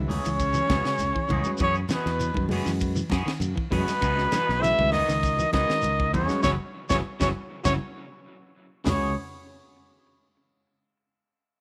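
Afrobeat at 99 BPM in 4/4 with a straight feel, this defiant, funky passage in C# minor is cut from a longer piece and moves through C#m9 and F#9sus4 before settling on C#m7 around 8.9 seconds. A breathy, whispered trumpet carries the melody up front with vibrato and a soft attack, while a growling, raspy baritone saxophone and a distant, very quiet trombone with scooped notes add second lines beneath it. A tight funk drum kit with bright cymbals and a high-tuned snare drives the groove alongside a round fingered electric bass, soft-handed congas and a grainy, close shekere. In the background, one slightly broken-up guitar plays fingered arpeggios through lush chorus and tape echo, a second, twangy picked guitar adds phaser-treated stabs, and a bell-like, barky tine electric piano fills out the accompaniment. The band hits an accent from 6.4 seconds, with the electric piano adding a fill from 7.1 seconds, and a drum fill at 8.3 seconds leads into a new section, all set in a small room with light reverb.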